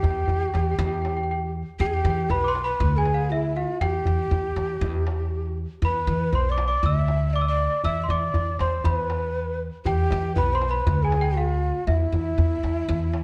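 A dark, warm production places a small ensemble on a scoring stage with a moderate reverb tail, giving this festive excerpt of Arabic maqam music a rounded glow. Set in maqam saba on E at 119 BPM in a straight 4/4, the passage runs 13.2 seconds and is cut from a longer piece. A worn celesta carries the melody high in its range, its bell-like, sweet tone sounding slightly out of tune and a little boxy, as if heard in a small room. Beneath it, a breathy end-blown ney traces a second line with reedy cane color, vibrato and a crisp attack. An upright bass, played pizzicato on gut strings, sits up front with a woody, thumpy presence, while a large metal-shelled darbuka adds deep, crisp strokes from soft hands in a live room.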